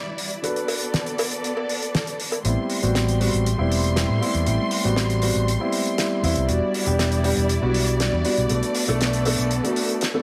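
A straight 4/4 nu-disco groove at 119 BPM in A dorian, this sleek, cosmic excerpt from a longer piece rides a damped 70s drum kit with a dry, fat snare and hi-hat up front, joined briefly by a close cowbell part with egg shaker and group handclap from 0.7 to 2.4 seconds. A dark, mellow grand piano with audible action noise, tape echo and a low-pass filter plays accompaniment over lush, bowed symphonic strings holding vibrato-laden sustained chords through Bm7, Am7 and Em7. At 2.4 seconds a punchy, amped fingered bass with an envelope filter enters, and from 2.5 seconds the piece builds while a filter sweep moves across the piano, all in light reverb and small room ambience.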